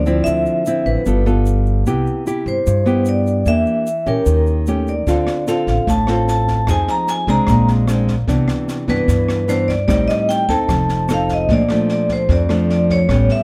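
The vibraphone carries the melody with medium hard mallets, its metallic, ringing tone shimmering with a fast motor vibrato over this romantic, sunny bossa nova cut from a longer piece, moving at 150 BPM in a straight 4/4. Up front, a small, dark nylon-string guitar is fingerpicked beneath it, sounding chords such as Dm9, G9, Cmaj7 and Eb7#11 before settling on Bbmaj7 as a new section begins at 11.5 seconds. A woody, thumpy pizzicato upright bass with steel strings anchors the low end throughout. A grainy, bright egg shaker sits close but in the background until 11.5 seconds, and an airy, polished acoustic drum kit in a small room joins at 5.1 seconds with a boomy kick, rim clicks and a high-tuned snare. The production is dark and warm with little reverb, giving the ensemble an intimate, dry presence.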